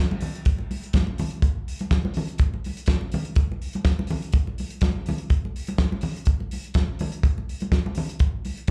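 Danceable and glamorous, this short disco excerpt at 124 BPM in a straight 4/4 pairs an up-front soul drum kit, with its fat snare, tight kick, hi-hat and rolled-off top, against bright, thin-skinned, damped congas carrying a slapback echo, all heard live through a venue's PA with club reverb and small room ambience.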